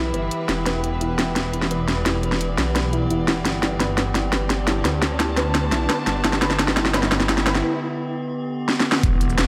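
A dreamy, reverb-soaked hall sound frames this tense, futuristic slice of dark technical drum and bass, where an eerie, metallic FM drone, a soft, round pluck with a filter sweep in the background, a swirling, thick, phased sawtooth bass up front, and a dark, woody bowed string section all pump against the sidechain beneath an overdriven kit of cracking snare and bright hats, while a very quiet riser enters at 2.5 seconds, a break opens at 7.6 seconds, and at 9.0 seconds a knocking electronic kick, a gritty, pitched-up sampler-style kit and an impact land together.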